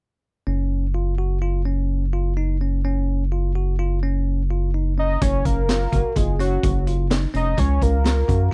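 A dry, close recording with a 1970s studio character opens this short cut from a longer progressive instrumental, intricate and driving at 127 BPM in a straight 5/4, in F# major. From 0.5 seconds, a bell-like tine electric piano plays clean, bright arpeggios in a narrow middle register, while a round analog bass sits up front, deep and dark with a fast attack and sustained notes. The harmony rests on an F#5 chord before moving to F#maj7 as the second section begins. At 5.0 seconds, a hollow, bold lead doubled at the fifth takes the melody, its sawtooth and triangle tones carrying chorus and vibrato in a mellow line. The drums arrive at 5.2 seconds, a raw garage kit with hi-hat, a high-tuned snare and a boomy kick, saturated and gritty with a rolled-off top and a small-room feel.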